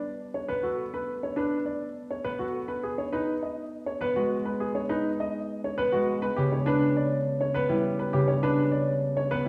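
A straight 3/4 pulse at 102 BPM drives this meditative yet urgent minimalist classical pattern piece, cut from a longer work, in which a dark, worn baby grand piano carries the melody up front from the start, a thumb-plucked, ringing concert harp supplies low accompaniment, and a natural-sounding concert grand with deep bass and audible action noise enters at 0.5 seconds with arpeggios, the trio set back in a wet recital hall as the harmony moves from B7 through G#m to Em.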